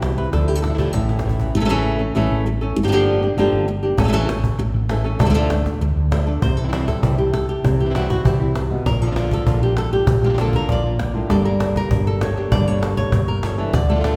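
A straight 4/4 pulse at 197 BPM drives this intense, fiery flamenco piece, where an up-front fingerpicked flamenco guitar carries the melody with audible finger squeak, a second acoustic flamenco guitar adds stabs that drop away at 1.6 seconds and return at 6.4 seconds, a growly, hollow-body fretless electric bass anchors the low end, and a woody cajon with faint snares plays a short fill before pausing briefly, all set in the lush reverb of a concert hall as the harmony moves through D minor, A, G minor, C and B-flat.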